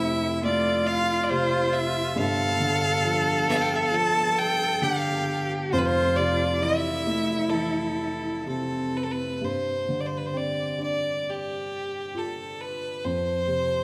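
Rubato phrasing in a loose 4/4 gives this Celtic slow air a free, breathing pulse, and the mood is nostalgic and wistful. A single bowed fiddle carries the melody up front, its rich, intense tone touched with light vibrato yet carrying a slightly distant quality. Beneath it, a bowed cello sings a focused second line with vibrato and a smooth top, then falls away at 9.4 s as the piece moves into its second section. A dark, woody upright piano provides mellow, natural accompaniment with long sustain, spanning from deep bass into the middle register throughout. The harmony drifts between Fmaj7 and G7, shifts to G7sus4 at the start of the second section, and settles on an open F5 near the end of this cut from a longer piece. A lush church reverb with a long tail surrounds the players and lends the performance a spacious quality.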